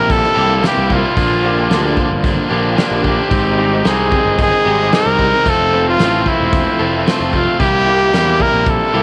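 A bright, up-front trumpet carries the melody with vibrato and a smooth pop-style top, colored by cassette tape grit and analog delay, in this upbeat, jangly indie rock clip cut from a longer piece. Beneath it, a compressed, overdriven picked electric guitar plays a prominent riff while a darker, slightly broken-up fingered guitar, lo-fi and treated with ensemble chorus, joins at 0.3 seconds in the background. A punchy fuzz bass and a loose acoustic drum kit with a fat snare, punchy kick and pumping room sound drive the C7, Bb6, Abmaj7 and Fmaj7 changes, all wrapped in light reverb and the homespun feel of a cassette home recording.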